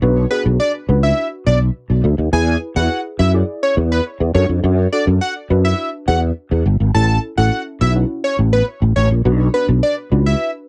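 This short cut from a longer dance-pop piece has a dry, homespun sound, captured at home on cassette with little reverb. The mood is summery and carefree over a straight four-beat pulse, with chords moving through Bm, E, D and A before returning to Bm at 9.3 seconds. Up front, a growly, amped fretless electric bass sustains through the low register, treated with an ensemble chorus that gives the bottom end a warm electric weight. Above it sits a soft, dark chord stab in the middle register, its detuned sawtooth, triangle and sine tones decaying after a fast attack and warbling through chorus and cassette-tape coloring. The melody comes from a punchy, bright unison lead entering at 0.3 seconds, built from detuned sawtooth, sine and square waves with a sub octave, a noise layer and a filter sweep. The lead also carries a cassette-tape effect and forms a catchy, full-bodied hook.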